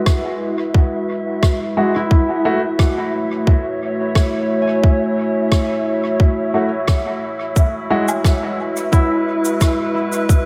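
Ambient dub with a deep, meditative mood, this short excerpt from a longer piece moves at an unhurried straight pulse in 4/4. A warbling, nostalgic pad holds sustained chords throughout, its detuned, lo-fi tone thickened by chorus and its own reverb, while an airy, breathy wind-like noise texture sits dark in the background. A tight, overdriven electronic kick drum stands up front, joined by a natural-sounding set of rim click, cabasa and woodblock trailing dub echo. A woody upright piano plays short stabs from 1.8 to 8.0 seconds, roughened with vintage sampler grit, filtered and echoed, and a ringing, fingerpicked concert harp adds arpeggios from 2.0 seconds, softened by a low-pass filter and tape echo. The harmony moves from Eadd9 to F#m7 and back to Eadd9, all set in a moderate spring reverb.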